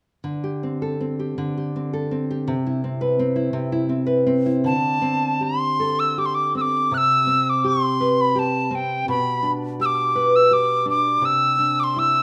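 Pastoral and nostalgic, this fragment of a Celtic folk slow air drifts in 3/4 at a rubato 82 BPM, opening with a dark, full-bodied fingerpicked nylon-string guitar, complete with finger squeak, moving through chords such as D7sus4 and Cmaj7 before a bright, reedy wooden whistle with airy chiff and gentle vibrato takes the melody up front at 4.7 seconds, both parts resting in a moderate recital hall reverb until 12.2 seconds.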